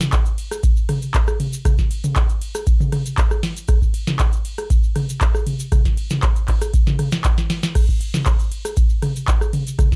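Gritty and hypnotic, this straight 118 BPM house excerpt in 4/4 rides on a deep, tape-warm electronic kick up front, alongside a booming analog drum machine whose tonal snare, handclaps, metallic hi-hat, ride, crash, rim click and toms carry a short room on snare, clap and hats, plus a grainy, bright, compressed tube shaker tucked in the background, within a dark, dry production broken by a drum fill at 7.4 seconds.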